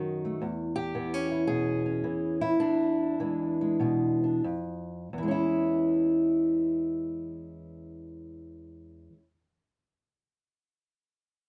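A fingerpicked old ladder-braced acoustic guitar, dark, woody and boxy with old strings, sits up front in light reverb as it plays alone from 0.0 to 9.2 seconds through this soulful, laid-back acoustic country blues in E mixolydian, swinging in 4/4 between 85 and 114 BPM. It slows down from 0.4 to 5.1 seconds, opening on an E6 chord and dropping to an unharmonized stretch at 4.4 seconds before returning to E6 at 5.1 seconds in this short cut from a longer piece.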